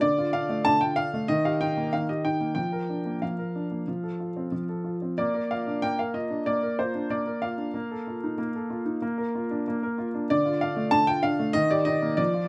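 A clear, intimate grand piano plays alone up front for the full 12.5 seconds, a graceful, elegant classical-period sonatina in a straight 4/4 whose chords move from Dm through Eb and Bb, with audible action noise, long sustain and light reverb framing this short cut from a longer piece.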